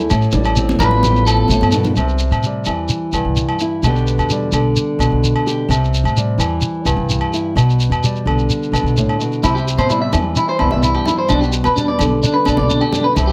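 A danceable, carefree highlife guitar band groove moves along at 128 BPM in a straight 4/4, settled in C major and circling between C and G/B after an opening Fadd9/A chord. A fingerpicked nylon-string guitar with fresh strings sits up front throughout, carrying the accompaniment over a woody, thumpy upright bass whose gut strings are plucked pizzicato. Ringing, vintage-toned agogo bells and a grainy, close shekere keep the percussion bed going from the start, while bright, high-tuned congas with hard hands sound distant in a large room, playing briefly at the opening and returning from 9.4 seconds. A slightly broken-up, compressed electric guitar plays picked arpeggios with spring reverb and slapback echo, appearing for a moment near 0.8 seconds and then coming back from 9.4 seconds to the end. The opening two seconds also feature a clean electric guitar solo and a drum fill from 1.4 seconds, and the whole passage, cut from a longer piece, sits in a light reverb.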